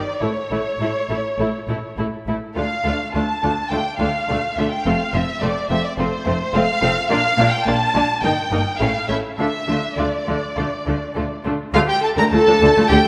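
The first violins stand out, carrying the melody up front with a lush, expressive tone full of vibrato and portamento, even as a slightly distant quality hangs around them. This short cut from a quick classical-period movement for string orchestra feels restless and urgent, moving in a straight four-beat metre. Second violins add a focused, smooth-topped second line beneath, while violas supply even, bowed accompaniment. Cellos sit in the background with a smooth, rich body, and a focused double bass section anchors the bass alongside them. The harmony passes from A to D minor, F and B-flat, touches E-flat and A, and returns to D minor at 9.4 seconds, all bathed in a wet scoring-stage reverb.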